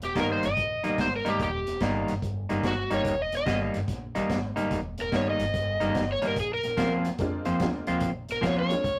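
A soulful, laid-back electric blues shuffle in Eb major at 145 BPM opens with an overdriven, up-front slide guitar carrying the melody over woody pizzicato upright bass and a gritty, rolled-off breakbeat kit with a punchy kick and high-tuned snare, while a clean, dark electric guitar riff enters at 0.2 seconds, the harmony shifts from Eb to Bb9 at 6.4 seconds, and a jangly, detuned honky-tonk upright piano drops in at 7.2 seconds, the whole captured as a rough rehearsal-room recording with light reverb and tube saturation.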